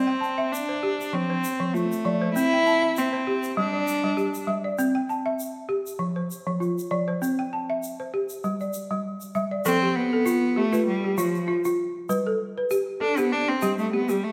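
Swung sixteenths over a steady 4/4 give this West African traditional excerpt a lilting, joyful bounce, cut from a longer piece. A balafon struck with hard rubber mallets carries arpeggios throughout, its tone woody, round and dark, sitting up front. A single bowed cello, clear and focused with vibrato, plays the melody from the start, drops out at 4.4 seconds, and returns at 9.7 seconds for a solo passage as the harmony moves to F and then G. A grainy egg shaker adds a bright, close rustle low in the mix beneath both instruments. The whole performance sits in a recital hall with a generous, lingering reverb that lends the sound a sense of space.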